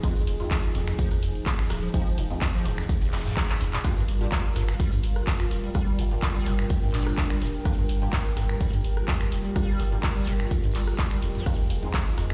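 Acid house at 126 BPM in G phrygian, gritty and hypnotic, built on an up-front punchy kick and an analog drum machine of snaps, claps, hi-hat, ride and rim clicks over a tight metal kit of hi-hat, shaker and snare, while a round, deep analog bass sits forward beneath a squelchy, resonant overdriven acid bass riff, muted dub chord stabs with phaser and tape echo, and a moody detuned pad pumping through Fm7 and Gm7, before a woody marimba line briefly appears from 5.4 to 7.1 seconds and an ethereal airy pad arrives at 5.7 seconds, the mix set in a stone-room reverb.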